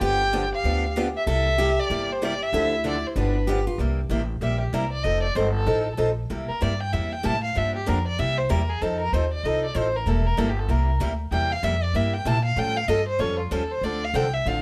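A swung 4/4 pulse at 191 BPM drives this lively, charming slice of acoustic string swing in the jazz manouche style, set in C mixolydian and cut from a longer piece. A bowed violin, warm with vibrato and portamento and smooth on top, carries the melody up front throughout, then takes an expressive solo from 3.8 s to the end. Beside it, a bright, full-bodied dreadnought guitar with fresh strings and audible finger squeak picks a second line only through the opening 3.8 s. A boxy parlour guitar, also picked and placed up front, keeps up the accompaniment over changes that run through dominant sevenths like C7 and F7, touching an Aaug7 near 12.6 s. Underneath, a pizzicato upright bass on gut strings gives a woody, thumpy foundation close to the listener, all in moderate studio reverb.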